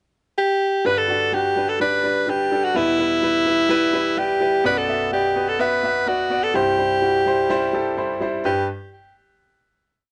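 The recording sits in a moderate booth ambience with a short decay and a softened top end. This uplifting, anthemic piano-driven pop piece has a straight 4/4 feel, opening with a brief pickup before a single verse moves through G, Em, Bm and C and settles on a closing G chord. An edgy alto saxophone carries the melody from 0.4 seconds, up front and present, playing a pop-style solo built on hook-like motifs with scooped notes. A bright, polished concert grand piano joins at 0.8 seconds as accompaniment, pulsing eighth-note chords in drop-2 voicings that pair brilliant upper sparkle with deep bass and a short sustain. Both parts stop at 8.7 seconds, just after that final chord arrives.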